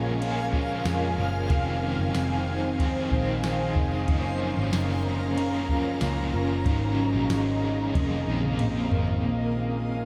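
Haunting and ethereal, this dream pop excerpt in Bb minor drifts at 93 BPM through Bbm7, Fm7, Gbmaj7 and suspended chords, all soaked in a huge ambient reverb with a 7.8-second tail. An up-front, airy pad sustains chords with ensemble chorus and tremolo, while a double-tracked overdriven guitar adds dark, tremolo-tinged accompaniment. A compressed guitar at the edge of break-up picks arpeggios through tape echo in the background, a round, foam-muted bass holds the low end, and a very quiet reversed texture swells brightly, as a tape-warm vintage rhythm box with deep kick and crisp snare keeps time before playing a drum fill from 8.0 to 9.2 seconds.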